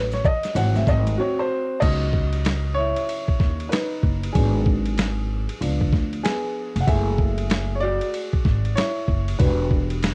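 Cool and mellow, this jazz-hop clip from a longer piece sets a smooth, vintage upright piano, soloing up front with plate reverb and a cassette tape tint, over a woody pizzicato upright bass and a compressed, pitched-down boom bap sampler kit with a thumpy kick, medium-tuned snare, hi-hat, ride and crash, while bright maracas and congas sit in the background until 1.2 s, where a brief break gives way at 1.8 s to a longer section of the piano solo, all with the warm feel of a home cassette recording.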